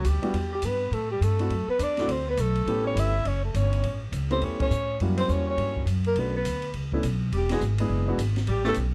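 Small-group swing and bop jazz moves at a brisk 207 BPM in 4/4 with a lilting swing feel, sounding playful and sophisticated in A mixolydian across this short cut from a longer piece. A breathy, close-miked alto saxophone carries the melody with vibrato, soft attacks and scooped notes, its whispered, intimate tone set in plate reverb. Beneath it a clear tenor saxophone with light vibrato and a smooth top plays a second line, while a grand piano enters at 0.2 seconds with natural-sounding accompaniment through changes like Em, D7, F#7b9 and Bm7. The pizzicato upright bass sits up front, woody and warm with steel strings, and is the most prominent part in the mix. An acoustic drum kit in a studio room adds dark cymbals, a high-tuned snare and a boomy kick on hi-hat and ride, with the full band striking an accent at 4.6 seconds in a dry, dark production.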